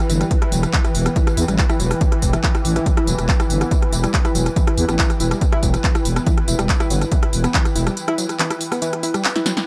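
Intense and hypnotic, this cut from a longer driving peak-time techno track runs at 141 BPM in a straight 4/4, sitting on a single E minor chord. A punchy, layered electronic kick sits up front from 0.3 seconds, joined by a techno drum kit of handclaps, smooth hi-hats, rim clicks, a punchy snare and tambourine, with sidechain pumping on the hats and percussion. Underneath, a growling, thick FM bass in the low register pumps against the kick until it stops at 7.9 seconds, as a break opens within the drop from 8.0 seconds and a short drum fill arrives at 9.4 seconds. A warbly, dusty lo-fi pluck carries the riff with chorus, digital delay and a filter sweep, its decaying notes pumping in time. Behind it, an airy, breathy pad with a nasal edge adds chorused texture, while a swarming, detuned granular drone in the background holds a tense, evolving bed with its own reverb, all in a dry mix.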